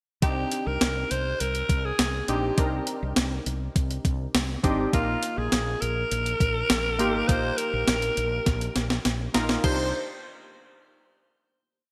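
A breathy, raspy alto saxophone leads this short, urgent and moody 1980s-style pop piece, singing motif-based song phrases with vibrato and scooped notes through a digital delay. Beneath it, glassy digital keys play a close-voiced, pushed chord rhythm with a detuned, airy chorus shimmer and a filter sweep, moving from Cmadd9 to Bbsus4. A woody, round fretless electric bass drives steady eighth notes. An overdriven 12-bit drum machine with a thumpy kick sits up front, giving a big backbeat with gated reverb and a drum fill at 8.5 s before the piece settles on a final Cmadd9 chord at 9.6 s. A lush hall reverb and a bright digital production polish the whole track.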